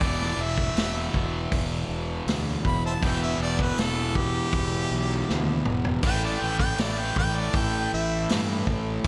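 Blues rock in a power-trio mold with a southern rock streak, this short cut from a longer piece feels smoky and brooding at a slow, straight pace. A bright, close-miked harmonica carries the melody as a jazz-tinged solo, with light vibrato, tongue slaps and scooped notes, roughened by overdrive and a slapback echo until it drops out at 8.3 seconds. Beneath it, a sludgy, double-tracked electric guitar sits up front with a picked, overdriven riff that also catches the slapback echo. A dark, round fingered bass, fuzzed and overdriven, holds down the low end, while a vintage acoustic kit with a punchy kick, medium-tuned snare and rolled-off top plays from a studio room, adding a drum fill from 5.3 to 6.0 seconds. The harmony rests on E minor before moving to an A power chord at 6.0 seconds, all set in a light reverb.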